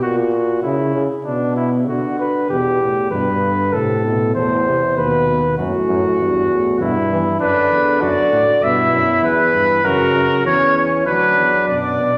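In a straight 4/4 at 98 BPM, this driving, serious classical canzona for brass ensemble in E minor, cut from a longer piece, opens with a clear, close-miked flugelhorn carrying the second line over a trombone accompaniment with a soft attack and smooth top. A mellow bass trombone enters beneath them at 2.5 seconds. A distant trumpet with light vibrato takes the melody up front at 7.4 seconds, all set in a roomy recital-hall reverb.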